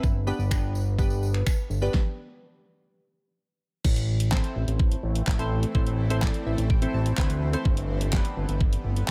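Dry and close, this bittersweet, driving dance-pop excerpt pairs glassy, phased digital keys with a fat, saturated analog bass that pumps against an overdriven pop kit of knocking kick, hefty snare, snaps, handclaps, hi-hat and crash, while a jingly tambourine rings out only in the opening moments. After a stop in the groove, the music moves from G to A minor, and a shimmering, ethereal pad with octave-up sparkle and built-in reverb enters at 5.0 seconds. The keys then play a fill from 6.2 seconds before the harmony returns to G.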